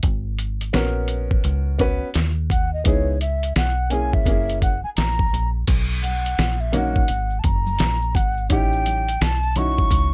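Dry and close, this relaxed, smooth jazz-hop cut from a longer piece rides a swung groove of muffled, tape-warm sampler drums with a thumpy kick and fat snare, plus a dark, round, foam-muted fingered electric bass, while a clear, woody upright piano enters at 0.7 seconds, a breathy, mellow concert flute carries an expressive vibrato melody from 2.5 seconds, and soft-handed maracas and congas ring in the background from 5.7 seconds.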